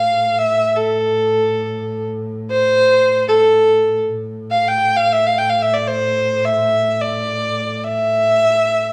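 Unfolding in free time, this melancholic, hypnotic slice of makam ensemble music sets a single bowed kamancheh up front, its clear, focused line sliding between notes with portamento and vibrato. Beneath it, a lone bowed double bass holds a warm, nasal, slightly boxy drone with its own vibrato, sitting well under the melody for the full 8.9 seconds. The two players sound live together in one large studio room, where a lush reverb lingers around the bowing as the passage is cut from a longer piece.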